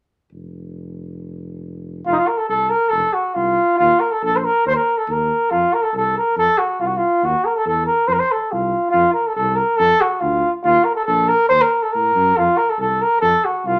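A warm flugelhorn carries the melody in this short fragment of Balkan folk music, entering at 2.1 seconds and playing up front in a classical style with light vibrato and a soft attack, its tone sounding distant and roomy. Beneath it, a dark, close-miked tuba holds the bass line from 0.3 seconds, opening the piece alone before the horn arrives, and sits lower in the balance. The mood is restless and virtuosic, set in a straight two-beat metre. The harmony circles around F power chords, passing through Eb, a tense Gb7#9 and an Eb minor before settling back on F. A moderate studio reverb gives the pair a sense of space, and both parts continue together until the fragment breaks off at 13.8 seconds.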